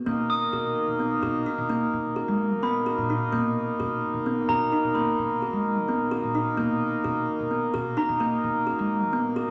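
A reedy, breathing harmonium opens at 0.1 s with sustained chords on a Bmaj7, sitting up front alongside a dark, woody kalimba spinning out arpeggios and a pizzicato upright bass with steel strings carrying the low line. Moments later, at 0.3 s, a glockenspiel struck with hard plastic mallets adds a metallic, bell-like shimmer high above as a texture. This is contemporary chamber music in B major, moving in an uneven 7/8 at 258 BPM counted in eighths with a straight feel, and the mood is shimmering yet restless. The kalimba's thumbnail plucks are short and hollow against the harmonium's nasal, boxy reed tone, while the bass stays acoustic and warm underneath. A wet recital-hall reverb surrounds the group, and the passage, cut from a longer piece, runs to 9.5 s.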